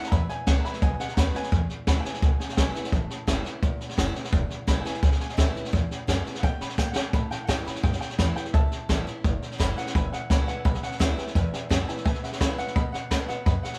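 An upbeat, rowdy rockabilly excerpt in E mixolydian at 171 BPM opens with a clear, woody upright piano carrying the melody over a jangly, detuned honky-tonk upright piano, a boxy picked parlour steel-string acoustic guitar, a thumpy pizzicato upright bass and an up-front jazz brush kit with a high-tuned snare and boomy kick. As the clear piano takes a solo from 1.5 seconds, the honky-tonk piano drops out until it returns at 9.9 seconds, and a drum fill at 6.8 seconds leads into the A7 change as the harmony moves through E7, A7 and B7 in a lightly reverberant live room.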